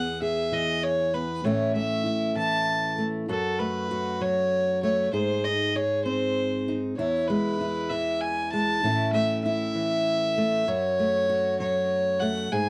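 Folk in a straight 6/8, this short excerpt from a longer piece carries a warm, anthemic mood as a single bowed fiddle sings the melody over fingerpicked steel-string acoustic guitar, both playing throughout. The fiddle has a nasal, reedy gut-string tone, while the guitar's accompaniment lets a little finger squeak through. The close, dry 1970s-style studio sound keeps both instruments up front under light reverb, and the chords move through E, A, F#m and G# before the passage repeats.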